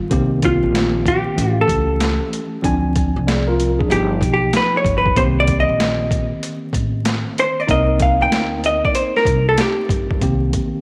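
A dark, clean hollow-body jazz guitar carries the melody up front through a short jazz-hop excerpt at 95 BPM in C dorian, soloing over a swung boom bap beat of gritty, pitched-down sampler drums with a thumpy kick and high-tuned snare, a woody, growly pizzicato upright bass, and a worn, slightly out-of-tune tine electric piano, all set in light reverb with vinyl crackle for a cool, nocturnal mood.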